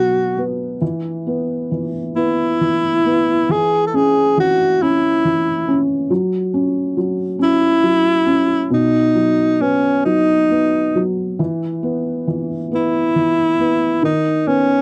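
A clear alto saxophone sings a gentle pop-style melody with vibrato, carrying a slight cassette-tape grain, over a soft, dark and boxy felt-muted upright piano, both placed up front from the first moment. This sleepy children's lullaby sways freely in a rubato 6/8 at about 45 BPM in E major, drifting through C#m, F# and B harmonies before settling back toward E. The intimate home cassette recording sits in a small, wet booth ambience, and this portion is cut from a longer piece, ending at 14.8 seconds on a B chord over D#.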